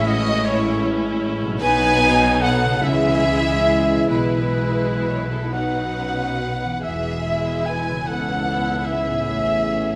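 A moderate scoring-stage reverb gives this serene, lyrical fragment of a slow romantic orchestral movement in E major a spacious glow, its 6/8 pulse easing along with rubato at 40-54 BPM in dotted quarters. A violin section carries the melody with warm vibrato and expressive portamento. A clear solo oboe, a hollow flute and a second, lush violin section spin supporting lines. Violas, dark and distant French horns, tight trombones and ringing fingerpicked harp arpeggios fill out the harmony from Amaj7 through B and C#m to E. Rich cellos and double basses anchor the bass, and a barely audible timpani touch falls between 1.6 and 2.8 seconds.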